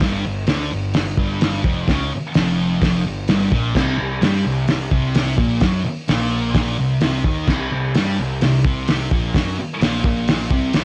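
A straight 4/4 beat at 129 BPM drives this raw, rowdy garage rock clip, a short cut of about 10.8 seconds from a longer piece. The cloth-damped drum kit sits up front with a thuddy, muffled sound: a fat snare, a tight kick, dark cymbals on hi-hat and crash, and a gritty, saturated tone with a rolled-off top from a small room. A thick, double-tracked fuzz guitar, also up front, picks a distorted riff between F2 and G3, its tone colored by cassette tape. Underneath, a picked electric bass with overdrive adds a round, punchy, dark growl from F1 to G2. The harmony moves from G5 to C5 at 3.8 seconds, and a light reverb wraps the lo-fi home cassette recording.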